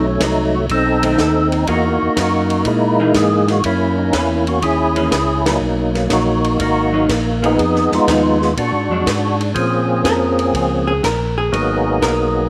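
An up-front, fat tonewheel organ with third-harmonic percussion, key click, light overdrive, chorus vibrato and a slow rotary speaker carries the melody in this smoky, soulful soul jazz organ trio excerpt, swinging in 4/4 over rich extended chords. A second tonewheel organ, full-bodied and also overdriven with slow rotary and chorus vibrato, plays the bass line, while a compact cocktail kit with a punchy kick, high-tuned snare and dark cymbals keeps time, and a clean, picked hollow-body electric guitar comps in the background from 1.0 s. After a band accent at 5.4 s, the guitar steps out for a solo from 9.6 s, and the trio sits in a moderate echo chamber reverb.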